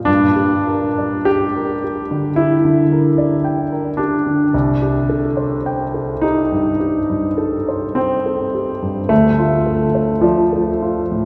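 Bathed in a long cathedral reverb and heard from further back in the room, this hazy, nocturnal fragment of impressionist solo piano, cut from a longer piece, drifts in G minor at a slow, rubato 47-56 BPM in 4/4. Its intimate, polished concert grand has deep bass, audible action noise and short sustain, and ranges from C2 to G5 as it moves through Gm6, then Cm6 at 4.5 seconds and Dm7 at 9.1 seconds.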